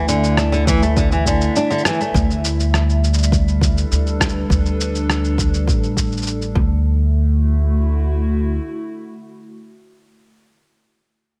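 A warbling, nostalgic pad with chorus, phaser and vintage 12-bit sampler grit opens this hopeful, playful folktronica fragment beside dark, fingerpicked flamenco guitar arpeggios through tape echo that stop at 2.1 seconds and a woody pizzicato upright bass up front, while muffled, pitched-down cabasa and rim click join a deep, overdriven electronic kick re-recorded in a large room, the kick dropping out at 6.7 seconds and the mellow pad sustaining its chords through to 10.0 seconds.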